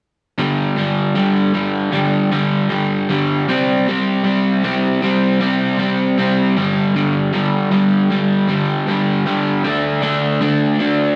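A crunchy overdriven electric guitar opens at 0.4 seconds, bright, picked and double-tracked up front, playing alone through a short rock excerpt in a straight 4/4 feel. Its gritty, swaggering power chords move from G5 to C5, back to G5 and on to D5, set in a wet echo-chamber reverb that lets each chord hang and ring. The guitar stops at 11.2 seconds, leaving the impression of a cut taken from a longer piece.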